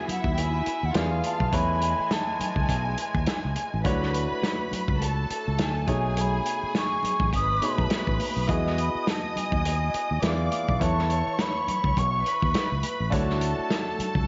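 Lush 1970s-style soul in E major at 104 BPM, with a swung sixteenth-note feel and a warm, plush mood, moving through rich chords such as Emaj7, Amaj9 and B13. A mellow, hollow, airy flute carries the melody through tape echo from 0.1 to 12.8 seconds, over a smooth, distant bowed string section with vibrato and a bright, brilliant grand piano. Underneath, a punchy fingered electric bass and an up-front vintage drum kit, muffled and lo-fi with a tight kick and a medium-tuned snare, drive the groove, while very quiet high-tuned congas add texture in a small room with light reverb and a rolled-off top end.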